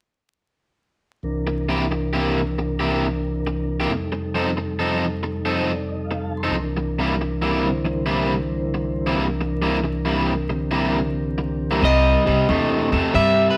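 Electric blues shuffle at 91 BPM in C mixolydian, gritty and soulful, where a mellow, flute-like tonewheel organ through a slow rotary speaker enters at about 1.2 seconds and a bright, overdriven semi-hollow guitar riff follows at 1.5 seconds, both riding over C7 and F7 changes, before an upright bass with woody, thumpy gut strings and a slightly broken-up lead guitar bathed in spring reverb join at 11.8 seconds, all captured as a band playing live in a stone room with vinyl crackle, cut from a longer piece.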